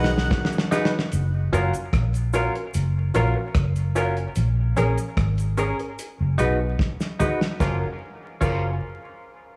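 Sunny and laid-back, this short roots reggae passage in F# major rolls along at 74 BPM, opening on a drum fill from a cloth-damped, thuddy kit with a fat snare and dark cymbals, while a round, punchy muted electric bass sits up front. A bright, clean semi-hollow guitar with dub echo and a woody upright piano playing stabs carry the accompaniment over chords moving between G#m7, F#maj7 and A#m7, and a close-miked harmonica with light vibrato and a tight horn section, both echoed and set in the background, appear briefly at the start. A dry cabasa slips in at 0.5 seconds, a second drum fill leads to the horns returning at 7.6 seconds, and vinyl crackle and light studio reverb surround it all.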